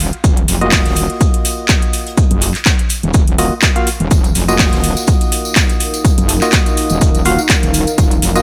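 Gritty and bouncy, this bass house excerpt in Eb minor moves at 124 BPM with a 16th-note swing, built on a metallic, distorted wobble bass and an overdriven house kit of handclaps and metallic hats, joined at 0.2 seconds by a punchy electronic kick and a natural acoustic jazz kit of hi-hat, shaker and high-tuned snare in the background, while hollow organ stabs with dub echo pump against the sidechain, a jingly tambourine arrives at 4.1 seconds and a deep, moody analog pad brings a sustained Ebmadd9 chord from 5.1 seconds, all set in a studio reverb.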